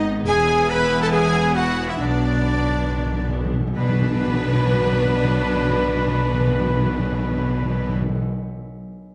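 Cinematic heroic adventure score in B dorian at 138 BPM, this swashbuckling excerpt sets an intense, distant violin melody over dark French horn chords, very quiet warm trombones, mellow trumpet stabs, oboe, pure flute and hushed second violins on secondary lines, background violas, and cello and smooth double bass on the bass, moving from E to Bm as close, dry, up-front timpani enter at 2.0 seconds with a fill, all within a wet scoring-stage reverb.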